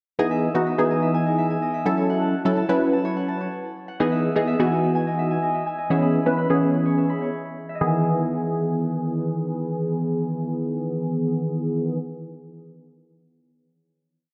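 Syncopated 4/4 chords with a straight feel from a punchy, detuned sawtooth polysynth with chorus, sitting up front, drive this carefree, euphoric dance-pop piece alongside a fingerpicked, ringing Celtic harp spinning sixteenth-note arpeggios in threes through tape echo, both playing through a filter-swept breakdown until a final Emaj7 chord arrives at 7.8 seconds, in a dreamy, low-pass-filtered mix soaked in wet plate reverb.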